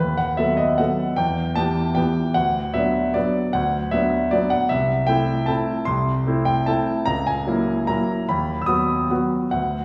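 A clear grand piano plays a wistful, elegant classical waltz alone, in 3/4 with a rubato feel that moves between 137 and 163 BPM in this short fragment cut from a longer piece. The instrument sounds intimate and natural, with long sustain and audible action noise, while a wet scoring-stage reverb places the listener further back in the room. The harmony passes through Em, Bm/D and Am/C before arriving on B/D# at 8.3 seconds.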